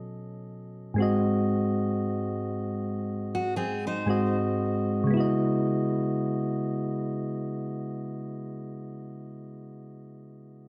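A lazily swung 16th-note groove carries this moody, sensual R&B excerpt, where soft, round electric-piano-like synth keys with a mellow chorus shimmer play the accompaniment throughout, joined only from 3.3 to 4.4 seconds by a full-bodied picked steel-string acoustic guitar arpeggio with audible finger squeak and delay, all set in a dark production bathed in a lush recital-hall reverb.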